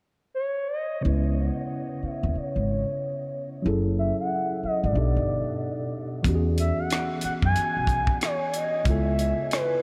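A smooth, gliding lead with a soft attack and vibrato opens this late-night, sultry neo-soul excerpt at 92 BPM in C# minor, its sustained line treated with chorus, phaser and analog delay. At 1.0 seconds a worn, slightly out-of-tune tine electric piano and a woody pizzicato upright bass join over a filter sweep, moving through chords such as C#m7, F#m9 and B7alt. A tight funk drum kit with hi-hat, kick and rim click arrives at 6.2 seconds, all of it soaked in a huge, dreamy ambient reverb.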